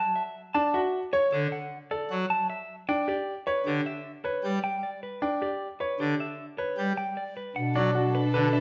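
Minimalist classical pattern music at 154 BPM in 6/4, propulsive and bright, where a clean, compressed electric guitar carries the melody up front from the start as a brilliant grand piano adds arpeggios and a majestic full pipe organ with mixtures supplies accompaniment over Dmaj7 and Em7 chords, until at 7.6 seconds the harmony turns to Bm7 and a hollow alto flute, a rich bowed chamber string section in the background and a roomy bass clarinet join briefly, all within a moderate large-studio reverb in this excerpt cut from a longer piece.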